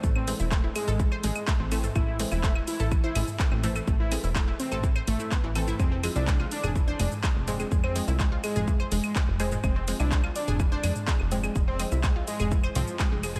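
A punchy, up-front electronic kick drives this dark melodic techno excerpt at 125 BPM in 4/4. Around it sit an overdriven house kit of claves, handclaps, hi-hat, shaker and toms heard in a large room; a funky, plucky analog bass and bright detuned pluck arpeggios, both pumping with the sidechain and the arpeggios trailing chorus and delay. A fat, nasal analog lead with vibrato, ring modulation and tape echo carries the melody over a very quiet, muted dub chord stab with a phaser, as the harmony moves from A minor to F minor at 5.8 seconds under light reverb.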